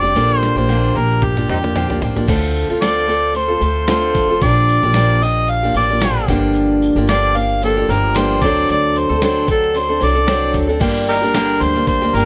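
Acoustic pop in G minor at 113 BPM with a lightly swung, wistful and reflective feel, led by an up-front, amplified harmonica, overdriven with light vibrato, tongue slaps and scooped notes, over a dark, picked steel-string acoustic guitar with audible finger squeak, a woody pizzicato upright bass and a gritty, compressed sampler-style soul drum kit with a thumpy kick that opens with a fill from 0.2 to 2.3 seconds, when a jingly tambourine joins in the background, set in light reverb as the chords move from Bb6 through Dm7, Gm7 and D7 to land on Gm.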